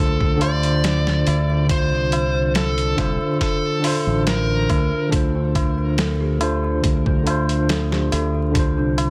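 A dark, overdriven slide guitar leads this hypnotic, smoky trip hop excerpt at 70 BPM, carrying the melody through a dub echo until 5.1 s. Beneath it, a tine electric piano with medium tremolo and tape echo plays the accompaniment through a combo amp, while a round, punchy fingered electric bass sits up front. A gritty, pitched-down boom bap sampler-style kit arrives at 0.2 s with a thumpy kick, medium-tuned snare and hi-hat, compressed and bathed in studio reverb, and a high-tuned, ringing tabla sits close and dry in the background. At 5.3 s a worn, slightly out-of-tune celesta enters with delicate, bell-like arpeggios roughened by vintage 12-bit sampler grit and delay. The harmony moves from Csus4/D to Dm7, all wrapped in digital ambience, vinyl crackle and a dense, heavily limited modern master.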